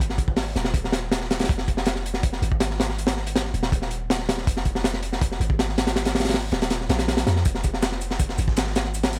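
Dark and atmospheric, this short excerpt from a longer drum and bass track moves at 161 BPM in a straight 4/4 with a jungle edge. A crunchy breakbeat kit sits up front from the start, its acoustic, small-room sound saturated and gritty, with a tight kick, a high-tuned snare and hi-hat under a rolled-off top. Beneath it, a deep 808-style bass with a sine tone, fast attack and decaying notes rumbles between Eb1 and F2, boomy and mellow. At 7.5 seconds a second, sampler-style breakbeat kit slips in far in the background, compressed and pitched up, adding hi-hat, shaker and another high-tuned snare, all high-pass filtered and re-recorded in a large room. The mix stays dry overall, keeping the main drums close and prominent over the low end.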